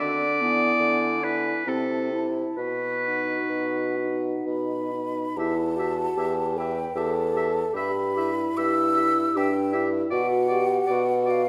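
Classical wind quintet in a slow, rubato triple metre, this melancholic, elegiac fragment of a longer movement sets an airy, hollow concert flute melody with a soft attack and vibrato above an up-front oboe carrying a second line from the opening. A dark, distant clarinet sits in the background as accompaniment alongside a close-miked French horn with vibrato and a soft attack entering at 0.4 s, while a present bassoon with light vibrato anchors the bass. Moderate stage reverb gives the ensemble a roomy glow, and the harmony shifts into a new passage at 5.4 s.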